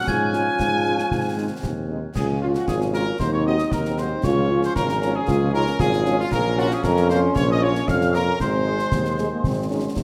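Heard through a moderate recital-hall reverb, this brief cut from a festive, proud military-style wind band march in Db major at 115 BPM in 2/4 puts a dark trumpet section on the melody over an up-front, smooth-topped tuba bass line, while a close-miked euphonium, airy flutes sitting distant in the background, clear sustained trombone chords and very quiet, mellow French horns fill out the harmony, a sparkling glockenspiel with brass mallets rings only through the first 1.9 seconds, and close, dry snare drum, dark clash cymbals and concert bass drum drive the march from 0.1 seconds onward.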